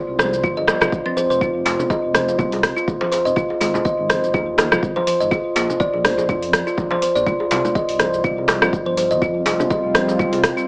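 Warm and hypnotic, this afro house excerpt in F minor moves at 123 BPM with a light 16th-note swing, driven by an overdriven deep house kit of metallic hats, rim click and shaker up front, a deep electronic kick re-recorded in a small room, and bright congas and cracking djembe tucked in the background. A dark, rumbling detuned saw bass pumps with sidechain compression while a woody, ringing kalimba plays arpeggios with tape echo over chords moving from C5 through F5, Ab and Bb5. At 9.2 s a smooth, chorused analog pad enters on an Fsus2 chord, and the whole mix carries a light reverb and an AM-radio colour.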